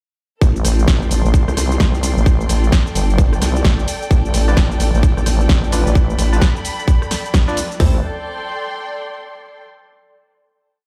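Gritty and bouncy, this short bass house piece opens with a nasal, saturated vowel-sweep wobble bass whose modulated phrases change wobble speed and pump against a garage kit's tight four-on-the-floor kick, floor tom and open hats. From the same moment a second house kit adds a punchy snare backbeat, rim clicks, shaker and bright hats to the swung sixteenth feel, while distant, dark chamber strings with vibrato hold slowly shifting chords behind them. From 4.5 seconds a hollow, ring-modulated organ stab scatters sparse echoing chords, and after a band accent at 7.3 seconds the strings sustain the final chord until 9.6 seconds.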